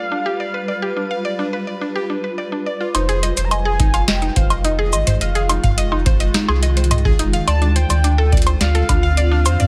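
Eerie and cerebral, this IDM excerpt moves at 106 BPM in a straight 4/4 in F dorian, drifting from G7 through Fm7 to Dm7. From the first moment a velvety synth lead carries the melody with chorus, tremolo, vibrato and digital delay. A mallet-like pluck traces woody, ring-modulated arpeggios with chorus and delay, while a cloudy granular pad holds blurred, evolving chords, roughened by vintage 12-bit sampler grit. A booming analog drum machine sits up front almost at once, its crisp snare, metallic hats, cabasa, woodblock and toms each dulled by low-pass filtering and re-recorded in a large room. At 2.9 seconds a round sine sub bass enters with a fast attack, and a deep electronic kick joins from 3.8 to 9.0 seconds. The mix is dry overall, with little reverb and a low-pass filter.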